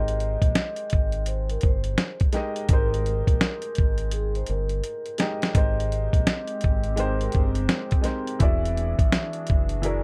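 A swung, gritty sampler-style drum kit with a thumpy kick sits up front in this mellow, nostalgic lo-fi hip hop excerpt, rolling into a drum fill from 4.1 to 5.5 seconds beside a round, dark fingered electric bass. Above them, a soft-mallet vibraphone carries the ringing, metallic melody while a woody, slightly detuned upright piano with cassette-tape colour and plate reverb plays the accompaniment over an Abmaj9 chord that moves to E9 at 8.4 seconds. At 6.2 seconds, a warbling, tape-like pad with chorus enters with a slow attack on sustained chords, adding a hazy layer under a light room reverb.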